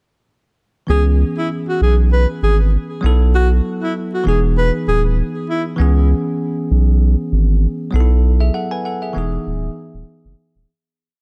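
The recording sits in a small, close room, with a thick, saturated sub bass up front and the other parts a step behind it. This short afrobeats piece in C# minor moves at 98 BPM in 4/4, its 16ths swung lightly, and the mood is sultry and hypnotic. The sub bass, deep and sine-rounded with a fast attack and sustained notes, plays a bouncy, syncopated line through the whole chorus from 0.9 seconds. A bell-like tine electric piano, bright and clean, holds drop-2 chords over a C#m7, B7sus4 and Emaj7 cycle that comes around twice, adding grace notes and short fills. A breathy alto saxophone with a soft, whispered, intimate tone carries a syncopated pop-style hook through a digital delay until 5.6 seconds. The piano and bass continue together as the track fades out from 8.2 seconds.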